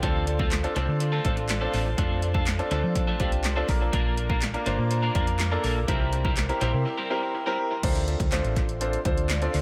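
A punchy analog drum machine with handclaps and crash, a dark, round hollow-body bass and a clear, up-front grand piano drive this summery, carefree dance-pop excerpt, the piano and bass both pumping with sidechain and the piano trailing tape echo. From the start, a slightly broken-up, picked electric guitar plays a compressed riff through chorus and echo until 7.7 s, while a very quiet, ethereal pad holds high sustained chords in an echo-heavy mix with spring reverb. The harmony moves from Dm7 through F6, Bb and C7, returning to Dm7 at 7.8 s.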